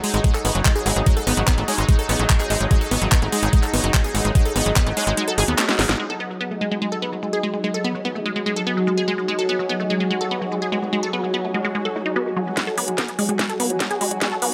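The knocking, tape-warm kick and a tight, nasal sequencer bass drive this psychedelic trance passage in G# minor at 146 BPM, with a punchy, detuned unison pluck riff carrying delay and a cracking snare, metallic hats and handclaps up front, while the kick drops out at 5.2 seconds ahead of a fill and band accent. Beneath them, a bubbling stepped-filter texture holds bright, resonant chords and an ethereal, mellow pad with phaser and ensemble chorus sits in the background, both breathing with sidechain pumping, while a very quiet, dark vowel-sweep wobble bass adds a second line. After a stretch with the bass and drums gone, the drums return at 12.6 seconds for a build-up with a filter sweep on the arpeggio sound, driving and psychedelic in a light reverb.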